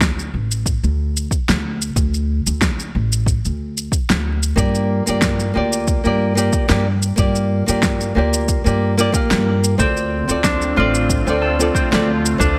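Smooth and warm, this sunset chillout excerpt moves at 92 BPM in D minor with a light 16th-note swing, as a woody, thumpy pizzicato upright bass sits up front beside a deep electronic kick and a fat, up-front snare and shaker with gated reverb, both drums carrying a tape-warm colour. A small, fingerpicked nylon-string guitar with delay enters at 4.6 s over a Gm7 chord, and at 9.8 s, as the harmony moves to Dm7, a ringing concert harp plays delayed arpeggios while an airy, breathy, warbling pad with chorus holds soft chords in the background. The bright 1980s-style digital production carries light reverb.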